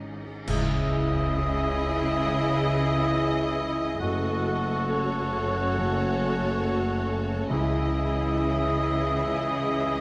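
Moving and bittersweet, this cinematic orchestral film-score excerpt unfolds at a rubato 69 BPM in C# minor, with a lush violin section carrying the melody over a second, more intense violin line, background violas and focused cellos, distant double basses and a dark, intimate grand piano with audible action noise; from 0.5 s a hollow silver flute, an oboe, a very quiet clarinet and a French horn section holding sustained chords join in, clash cymbals with concert bass drum mark the opening accent, and hard-mallet timpani sound at 7.5 s, inside a wet scoring-stage reverb.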